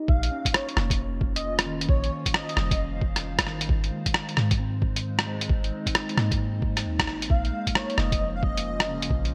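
A clean, direct tine electric piano and a warbling, detuned tape-like pad open this rainy, melancholic future garage excerpt, the pad's slow attack and long release smeared by chorus, phaser and its own reverb, while both pulse under sidechain pumping and the piano trails delay. Almost at once an airy, dreamy lead carries the melody in a high register, its soft, sine-based tone thickened by a noise layer, vibrato, chorus and delay; it drops out at 2.8 seconds and returns at 7.3 seconds. Underneath, a deep, round 808-style bass with a fast attack and decaying notes pumps along with the chords, which move from Bbmadd9 to Ab and back. A muffled, thumpy kick and an up-front, pitched-down sampler kit of hi-hat and rim click, both compressed and tape-warm, set a swung sixteenth-note groove in 4/4. The production is bright and 1980s-style digital with light reverb, its nostalgic haze sitting against a lo-fi drum texture.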